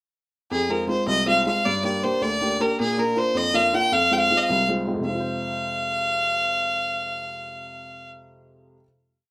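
Driving and spirited, this short Celtic folk jig in a straight 6/8 sets a clear, nasal, earthy fiddle with light vibrato, played up front yet with a distant edge, carrying a motif-based melody in period phrases over a woody, polished upright piano laying down oompah bass notes and chord figures through Fm, Gm and Bb, the piano ringing on alone until 8.9 seconds in a wet studio ambience with the rough feel of a home demo.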